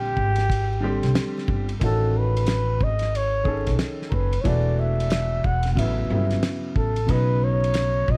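Jazz-hop excerpt at 91 BPM with a cool, warm mood and a swung 16th-note feel, where a breathy, mellow flugelhorn with light vibrato and scooped notes carries the melody over a clear, polished upright piano, both bathed in plate reverb, while a woody pizzicato upright bass sits up front and a cloth-damped, thuddy drum kit with a fat snare and dark cymbals enters at 0.2 seconds, all framed by a dark production with vinyl crackle as the chords move from a rootless A#13 through Amaj9 and E9sus4 to A9 and Badd9.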